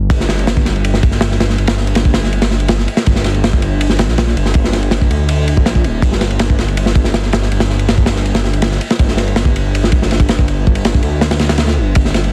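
Atmospheric and nostalgic, this drum and bass and jungle fragment in G minor at 162 BPM drops in at 0.1 s with a crunchy, gritty breakbeat kit of tight kick, medium-tuned snare and dark ride cymbal, heard up front with saturation and a rolled-off top, over a deep, rumbling detuned saw bass whose beating unison tone is thickened by tube saturation, all set dry in a dense, heavily limited master dusted with vinyl crackle.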